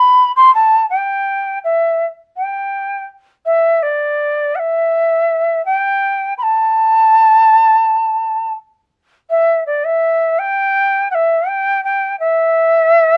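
In a straight, unhurried 4/4, a lone cane quena carries this melancholic, earthy Andean folk excerpt from 0.0 to 13.2 seconds, sitting up front in the mix. Its reedy, airy end-blown tone is tongued and colored with vibrato, while light reverb and the rough home-demo sound lend the playing a slightly distant quality.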